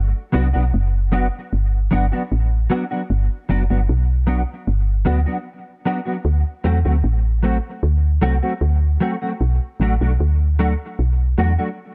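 Laid-back and warm, this short roots reggae clip rests on a woody, round FM bass with a fast attack and dark, decaying tone sitting up front, while a mellow, clean electric guitar, fingered and compressed, enters at 0.3 s at a softer level, colored by ensemble chorus and tape echo, as the harmony moves from Gmaj7 to D7 and Bm7 in a dry, close-sounding space.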